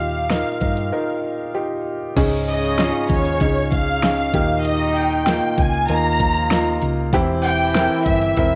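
A lightly reverberant studio sound frames this earnest, driving piano-driven pop excerpt, where a dark, woody violin section carries the melody up front over a smooth vintage grand piano, a round hollow-body electric bass and an overdriven pop drum kit with a knocking kick and fat snare, with a break from 0.9 to 2.2 seconds before a French horn section with light vibrato joins in the background at 2.2 seconds.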